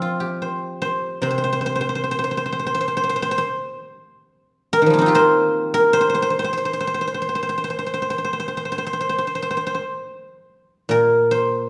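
A solo guzheng, mellow and silvery, rings out up front in this contemplative, elegant passage of Chinese traditional music, cut from a longer piece. Played with fingerpicks in a free, rubato feel, it spans a range from low Bb2 up to F5 across its 11.7 seconds. A moderate recital hall reverb surrounds the acoustic instrument, giving it the resonance of a church or concert hall.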